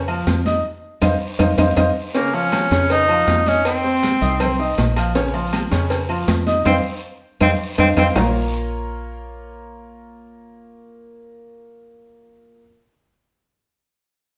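Salsa in a fiery, passionate mood, cut from a longer piece and played by a band together in one stone room whose reverb lends the sound a lively ambience. A dark, round, foam-muted fingered electric bass sits up front beside a clear, natural baby grand piano, with drum fills and full-band accents punching through the opening bars. Behind them a busy percussion section fills out the groove: bright, high-tuned congas, tight cowbell and bongos, ringing metal-shell agogo bells and timbales, woody claves kept very quiet, a raspy guiro and grainy, vintage-toned maracas. At 2.2 seconds a breathy tenor saxophone steps forward as soloist, whispered and intimate with a soft attack and light vibrato, before a second fill and accent close its phrase. The percussion drops out at 8.2 seconds, leaving bass and piano to carry on alone until 12.6 seconds.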